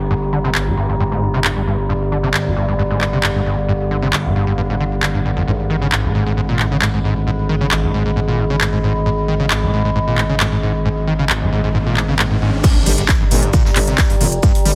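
A straight, driving pulse from a layered techno kit of claps, smooth hats, toms and crash carries this industrial peak-time techno cut, with sidechain pumping on a growling, thick FM bass and a squelchy, gritty acid riff whose resonant filter sweeps until the drop at 12.6 seconds. Beneath them sit an eerie, metallic ring-modulated drone and a nostalgic, lo-fi pad that warbles with chorus, while faint impacts and a riser mark the build as the harmony shifts from Gm to Abm and back. At the drop a heavy electronic kick lands up front, joined in the background by an acoustic big-room kit of shaker, hats and medium-tuned snare, all pressed into a heavily compressed, radio-like sound with moderate plate reverb.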